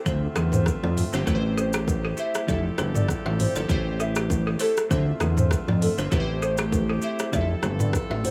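Set in a digital ambience, this sultry, smooth afrobeats clip in A minor moves at 99 BPM with a lightly swung 16th-note feel, cycling through Dm9, Am7 and Fmaj9 for about 8.3 seconds as a fragment of a longer piece. A hollow, woody clarinet-like synth lead with vibrato, chorus and tape echo carries the melody over glassy, bright digital keys with a filter sweep, while a fat, saturated analog bass and an up-front electronic drum kit with a deep kick, metallic hats, rim clicks, shaker and toms drive the groove. Further back sit a warm, distant brass ensemble holding chords and a buzzing, woody balafon riff with tape echo, joined by very quiet, ringing congas and bongos.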